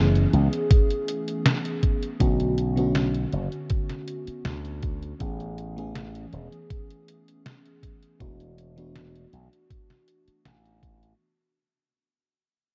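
Dark, cassette-tape production with light reverb gives this short vaporwave excerpt a dreamy, faded air, and the whole passage fades out across its 11.2 seconds. At a straight 80 BPM in 4/4, an up-front FM electric piano with a soft pad layer carries the harmony, its lush, detuned tone colored by tremolo, analog chorus and tape echo, with a mellow, decaying touch over a noise layer. Beneath it, a slap bass runs through an envelope filter and a low-pass filter, sounding bright, punchy and amped in the low register. A detuned 8-bit digital drum machine adds sampler-style hi-hat and a medium-tuned snare from 0.2 seconds, and a thumpy electronic kick drum sits up front from 0.7 seconds. The chords move from a rootless F#m11 through Bm7 and Amaj7 to a closing E7sus4.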